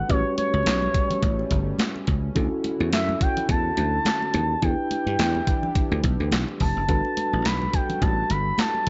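A smooth, chorused sawtooth lead with portamento and vibrato glides over a mellow tine electric piano and a shimmering pulse-width pad, joined at 0.1 seconds by a dry, growly slap bass, a crisp 8-bit drum machine with thumpy kick, handclaps and gated reverb, and very quiet bright congas, in a slick, danceable early-eighties boogie funk excerpt at 106 BPM in E dorian with a light swing, moving through A13, Dmaj9, Em7 and Gmaj9.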